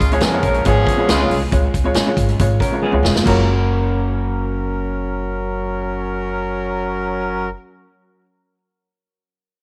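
This uptempo 1960s-style soul excerpt opens at 0.0 s with a jazz-style horn section up front, smooth on top with light vibrato, alongside a dark, woody pizzicato upright bass and a punchy, natural-sounding drum kit in a big room. At 138 BPM in a straight 4/4 and in F# major, the mood is uplifting and joyful. A worn, slightly detuned upright piano with short sustain fills the accompaniment. A twangy, slightly broken-up electric guitar plays a fingered riff, while a second, lo-fi picked guitar sits in the background with stabs colored by spring reverb and tape echo. The harmony rests on C# until a drum fill leads into a new section on F# at 3.2 s. At 3.4 s the drums and the riff guitar drop out, leaving horns, bass, piano and the background guitar stabs to carry on under light studio reverb.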